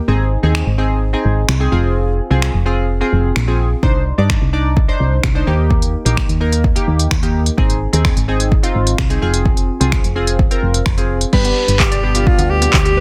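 A straight 4/4 pulse at 128 BPM drives this bittersweet, driving dance-pop excerpt, built on a layered deep house drum kit that enters at 0.5 s with a deep kick, smooth hi-hats, finger snaps, handclaps and crash cymbal, sitting up front with soft clipping on the snare. Beneath it, a punchy, round FM bass with a fast attack and dark decay pumps through sidechain compression. Glossy retro synth keys, mixing detuned pulse and sawtooth tones with pulse-width modulation, a filter sweep and chorus, also pump as they carry the chords Ab, Fm, Cmadd9 and Eb. At 11.3 s the harmony shifts to G and new layers appear. A vibrato-laden alto saxophone solo with digital delay takes the pop-style melody up front, while a bright, resonant pad with a slow attack and a filter swell and a hollow, bouncy square-wave pluck playing arpeggios sit in the background, both chorused and pumping, with delay on the pluck. 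The sound is dry, with little reverb, and the master is dense and heavily limited in a modern style.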